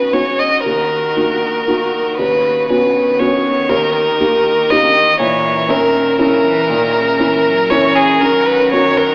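A clear, up-front solo violin carries the melody from the start, alongside a rich bowed cello on a second line, a soft, mellow felt-muted upright piano in intimate accompaniment, and a chamber string section holding sustained chords in the background. This reflective, fragile neoclassical fragment moves in a rubato 3/4 around 118 BPM, tuned to A4 = 437 Hz, drifting from Badd9 through D#m and A#dim before settling on F# at 8.2 seconds. A church-like recital hall adds a wet 1.5-second reverb, while an AM-radio tone and faint mains hum lend the whole a fragile character.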